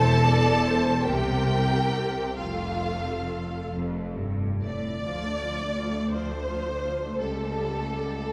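Lyrical and tender, this brief excerpt from a slow romantic movement for string orchestra sways in a rubato 6/8 at about 43-57 BPM, with a focused violin melody and a soft-attack second violin line in the background over distant viola accompaniment, a rich cello bass and woody double basses, all bowed with vibrato in a wet concert hall, as F major gives way to D minor at 5.0 s.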